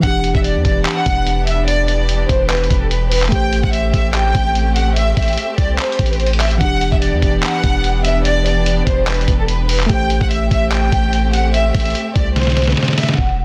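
Brooding, dark half-time trap hip hop opens with a woody, vibrato-rich violin section carrying the melody up front through a low-pass filter, over a worn, slightly out-of-tune tine electric piano, lush bowed string chords, a deep, long sine 808 bass and a muffled lo-fi sampler kit of thumpy kick, fat snare, hi-hat and handclaps with 12-bit grit, set in dense, heavily limited digital ambience until a drum fill at 12.4 seconds leads into a break at 13.2 seconds.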